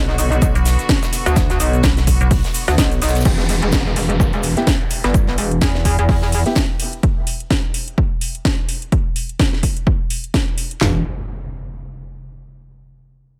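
Gritty and aggressive, this bass house excerpt drives at 127 BPM in 4/4 with a swung sixteenth feel, opening straight into a drop over B minor. A metallic, wobbling FM bass sits up front with chorus, overdrive and sidechain pumping, joined briefly by a second, digital FM bass that hits a decaying B1 between 0.6 and 2.4 seconds. Two overdriven house drum kits, layered and re-recorded in a large room, supply a punchy kick, cracking snares, handclaps, toms, crash, shaker and metallic hats. Further back, an airy, polished acoustic kit adds filtered hi-hat, shaker and snare. A clear, biting string section holds sustained chords under a low-pass filter until about 3.2 seconds, after which the harmony drops out and a downlifter and impact carry the transition. Later a dark, boxy baby grand piano fires short stabs with audible action noise and dub echo, and the passage closes on a last bass hit and a final impact inside a small room ambience.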